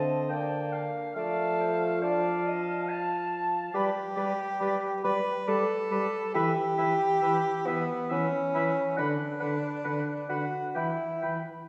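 A rubato 3/4 pulse at 69 BPM carries this slow, yearning and elegiac romantic movement for wind quintet, cut from a longer piece, with harmony moving from Dm through G and Em toward Bm/D. An airy silver concert flute with crisp attack and vibrato sings the melody above a distant, roomy oboe second line and a clear clarinet accompaniment set in the background, while a mellow French horn and a warm bassoon bass sit up front with light vibrato. The quintet is heard from further back in a small room, bathed in a wet scoring-stage reverb.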